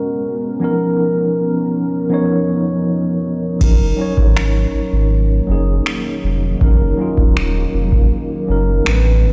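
Played through a big sound system in a bare stone room, this short cut of longing, sensual contemporary R&B at 80 BPM opens on a mellow tine electric piano over G#m11 and C#13, backed by a dark, detuned sawtooth pad with chorus sitting in the background, before a round sine sub bass and a booming analog drum machine with a deep kick, finger snaps, crash cymbal and gritty 12-bit sampler character arrive at 3.6 s as the harmony settles on F#6.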